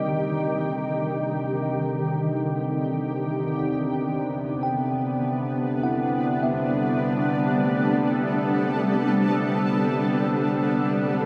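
Soaked in a huge, wet reverb with an 8.0-second tail, this peaceful ambient excerpt rests on a shimmering, ethereal pad up front, whose slow-attack chords carry an octave-up layer and a granular, wave-folded edge under chorus. In the background, a bright, clean tine electric piano plays arpeggios through tape echo, sounding as if heard through built-in speakers, while a vintage analog drone warbles and evolves with chorus on its sawtooth and pulse tones. The harmony moves from Ebmaj7 to Gmaj9 at 3.4 seconds.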